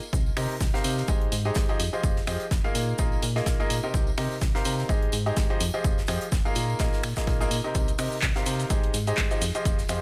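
A bright, woody upright piano riff sits up front from 0.4 seconds, brilliant over a Cm7, Abmaj7, Fm9 and Bb7sus4 progression, with sidechain pumping and dub echo, in this energetic yet bittersweet piano house clip cut from a longer piece. Beneath it, a round, mellow FM bass pumps against a punchy, tape-warm electronic kick, while an analog drum machine adds finger snaps, handclaps, hi-hat and shaker. Further back, an airy, polished studio kit supplies filtered hi-hat, shaker and a medium-tuned snare, and a tambourine with tube shaker and group handclap colours the small room ambience.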